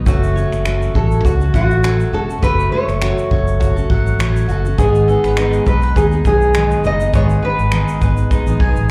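Heard as a live club gig through the venue's PA with small-room ambience, this carefree, heartfelt acoustic pop excerpt at 102 BPM sets a fingerpicked nylon-string guitar melody with slapback echo over a full-bodied steel-string acoustic guitar with finger squeak, a bright double-stringed mandolin playing arpeggios, a round, up-front fingered electric bass, a very quiet barky, lightly overdriven electric piano with fast tremolo, and an airy country kit of finger snaps, shaker and punchy kick, moving from F#m to G#m at 4.8 seconds.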